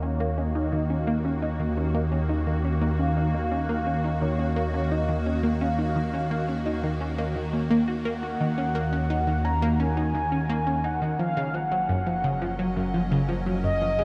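A nasal, detuned analog pluck carries a sawtooth riff through phaser, chorus and tape echo, over a fat, saturated bass and an evolving, morphing wavetable pad that holds up-front sustained chords with ensemble chorus. Above them, a mellow, horn-like synth lead with a soft attack, vibrato and a wave-folded edge sings its melody through analog chorus and tape echo, with all four parts playing from 0.0 s to 14.0 s. This cosmic, mysterious stretch of sequencer-driven ambient space music has a dark production bathed in huge, wet reverb, and its harmony shifts to Gb6 at 11.2 s.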